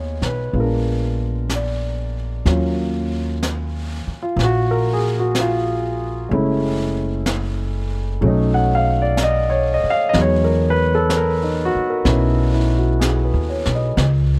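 The recording is close and detailed, with little reverb, so every part sits near the listener. This is a wistful, melancholic jazz ballad in Eb minor at a slow 62 BPM in 4/4, with a gentle swing on the eighth notes and tuning set to A4 = 436 Hz. A warm concert grand piano carries the accompaniment up front, its deep bass giving the chords weight, while a pizzicato upright bass with gut strings adds a woody, thumpy line from the low register. A dark, smooth brush drum kit enters at 0.2 seconds, its high-tuned snare and hi-hat sitting softly behind the other two. The harmony moves from Fm7b5 and Bb7b9 into Ebm9 at 2.5 seconds, then drifts through Gbm7 and B9 before settling on Emaj9. The whole passage is a short excerpt cut from a longer piece.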